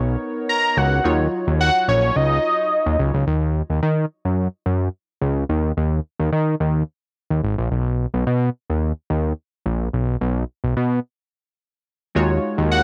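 Funky and danceable, this early-eighties boogie funk cut moves at 108 BPM in a straight 4/4, centred on Eb minor and tuned slightly sharp, with A4 at 441 Hz. A fat analog bass runs through the whole excerpt, thick and detuned with a sawtooth edge, a filter sweep and a fast, decaying attack that sits up front in the mix. Over the opening Bmaj9 and Ebm9 chords, a punchy polysynth comp blends sawtooth and square waves under chorus, while a mellow, detuned lead carries the melody from 0.5 to 3.0 seconds with vibrato, a sub octave, phaser and slapback echo. Once the groove settles onto Ebm at 3.3 seconds and then B at 7.7 seconds, the bass holds the floor by itself until a stop from 11.0 to 12.2 seconds. The comp and lead return briefly on an Ebm11 chord as the clip ends, all set in light reverb and digital ambience.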